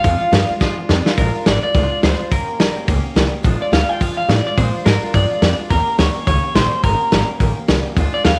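A twangy, slightly broken-up electric guitar through a small old amp opens this rollicking, retro rockabilly excerpt with a clean solo over a muffled, lo-fi vintage drum kit with a punchy kick and a fill from 0.6 to 1.2 seconds, then carries the melody with spring reverb and tape echo at a swinging 212 BPM in Bb mixolydian over Bb7 and Eb7, alongside a thumpy, woody pizzicato upright bass and a full-bodied picked steel-string acoustic guitar tucked in the background, all set in a small room with light reverb.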